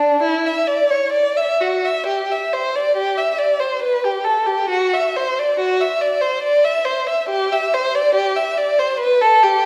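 This is a classical, baroque-style suite movement for unaccompanied violin, cut from a longer piece, with a dance-like, flowing mood in 3/4 time and a rubato feel. A single bowed violin plays alone for the whole 9.7 seconds, ranging from D4 to E5. Its tone is warm and expressive, with vibrato, a soft attack and portamento, and it sits up front in the sound. A short opening phrase gives way at 2.1 seconds to a return of the same material, which carries the line through to the end. The playing rings in a wet recital hall reverb, and the room sound places the listener further back in the space.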